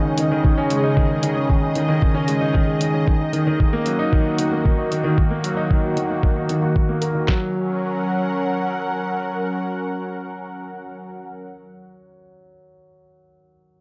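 A straight 4/4 groove at 114 BPM comes from a muffled, pitched-down sampler-style kit with a thumpy kick, medium-tuned snare and handclaps, layered with dark electronic hi-hats, and the drums drop out by 7.4 s. This luminous, tender piano and strings electronica piece in F# major moves from C#sus2 to D#m before resolving on F#. A polished grand piano riff with delay sits up front over a lush, airy sawtooth pad of detuned unison voices treated with chorus, phaser and sidechain pumping, and the piano carries on alone after the pad ends at 11.6 s, all within a dark, warm mix and a moderate echo-chamber reverb.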